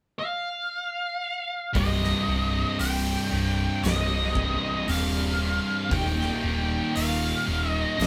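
An up-front, dark octave-fuzz lead guitar opens this brooding, heavy stoner and doom metal excerpt alone at a crawling 58 BPM in C minor, carrying the melody between Eb5 and G5. At 1.7 seconds the weight arrives: a bright, double-tracked high-gain guitar and two thick fuzz guitars, one set in the background, pick a low riff over Cm moving to Eb, joined at 1.8 seconds by a round, punchy hollow-body short-scale bass with overdrive and an oversized low-tuned kit with a boomy kick, fat snare, hi-hat and a gritty, saturated, pumping room sound. The band plays live together in one room with moderate studio reverb.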